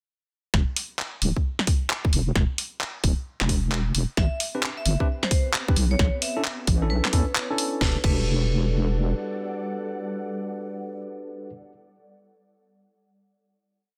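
A dense, heavily limited and nearly dry mix carries this late-night, skippy two-step UK garage piece in E minor at 132 BPM, where a tight electronic kick, a garage kit of cracking snare, handclaps, crash and bright swung hi-hats, and a deep wobbling bass with chorus drive the groove from 0.5 seconds, before a ringing hard-mallet vibraphone riff with delay, clean tine electric piano stabs and a mellow, airy, pumping pad arrive from about 4.2 seconds and carry into a final Em11 chord that begins at 7.8 seconds.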